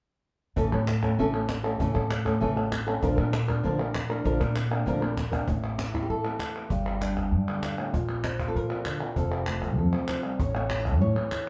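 A wet studio reverb gives this short flamenco cut a roomy feel, heard from a little further back, with a passionate, dramatic mood in straight 4/4. Up front, a fingerpicked acoustic guitar carries the melody with a warm tone and audible finger squeak. Beside it, a woody, thumpy pizzicato upright bass on gut strings anchors the low end until 11.1 s. A snappy cajon with snares sits close and dry, while crisp palmas hand claps sound distant, as if from a large room. The harmony moves from A to Bb, a drum fill runs from 4.3 s into a new passage at 5.5 s, and that passage steps through A5, G5, Bb5 and F before returning to A.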